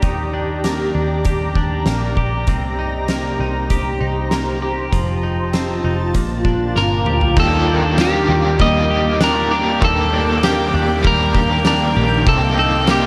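A haunting, melancholic dream pop passage at 98 BPM opens with a shimmering, detuned ambient pad holding sustained chords over Ebmaj7, Cm7, F7 and Bb6, while a bright, twangy twelve-string electric guitar plays arpeggios through chorus and delay, a round, foam-muted picked bass anchors the low end, and an oversized low-tuned drum kit with a fat snare, punchy kick and dark cymbals fills a gritty stone room. As a drum fill begins at 6.8 seconds, an up-front, slightly broken-up lead guitar enters with a melody through digital delay. At 7.4 seconds an overdriven electric guitar adds tremolo-laced, ensemble-chorused accompaniment as the harmony returns to Ebmaj7.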